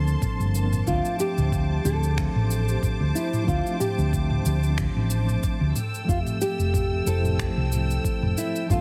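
A mellow tine electric piano with vintage sampler grit, a rich bowed string section with vibrato and a dark, round hollow-body electric bass open this smooth, relaxed sunset chillout excerpt, the bass sitting up front, with a swung sixteenth-note feel over Gm11, Dm7 and Fmaj9 chords. Tape-toned R&B drums with cabasa, finger snaps and toms join alongside a thumpy, gritty electronic kick, both in a small room. At 0.9 s a thumb-plucked nylon-string guitar carries the melody through a delay, and the whole mix has light reverb and a heavily compressed radio sound.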